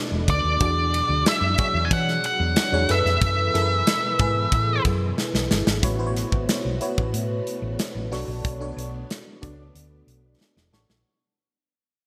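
A straight 4/4 groove from a punchy, up-front studio drum kit with gated reverb and a round, dark hollow-body fingered bass drives this slick, urban slice of polished 1980s jazz-funk pop, where a glassy, bell-like FM electric piano with phaser and subtle chorus comps over silky string-machine chords in the background, a distorted octave-fuzz lead guitar sings the melody up front until 4.8 s, and a drum fill at 5.2 s leads into a second section that fades out under bright digital production and lush hall reverb.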